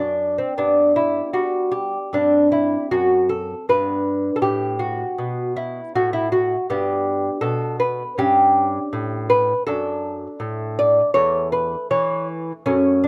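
Classical baroque-style dance in G major at 79 BPM in 4/4, serene and flowing with uneven, rubato beats, played by a solo fingerpicked lute whose delicate nylon double strings, some doubled at the octave, sit up front with a slapback echo in a dry outdoor recording, moving through chords such as F#m7b5, G, A7/G and D/F# across a 13.1-second section cut from a longer piece.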